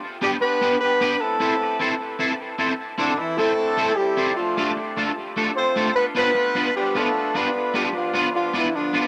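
A driving straight 4/4 pulse at 151 BPM sets this short ska cut in A minor, taken from a longer piece and carrying a mischievous edge. A horn section leads the melody from D3 to C5, its tight, smooth-topped playing doubled in octaves with light vibrato and a pop-style polish, sitting up front under a dub echo. An electric guitar at the edge of break-up supplies the accompaniment between A3 and C5, fingered and twangy, slightly broken-up, thickened by an ensemble chorus and the same dub echo. Both parts play together from 0.2 s to 9.1 s, while the harmony moves from G to Am, then Dm at 4.4 s and Bdim, with a new section arriving at 2.8 s. A moderate club reverb surrounds the pair's warm, forward sound.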